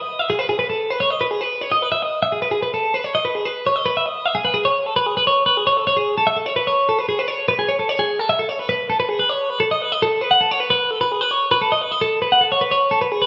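Rock in an odd 5/4 metre at 149 BPM, this wistful, bright excerpt from a longer piece features a twelve-string electric guitar playing solo from start to finish across roughly 13.3 seconds, moving between G#4 and F#5. The guitar's clean, picked tone is twangy and compressed, sitting up front with spring reverb, while the wet stone room adds a 1.3-second tail that gives the live, one-room performance an airy sense of space. Its phrases shift into a new section at 4.7 seconds.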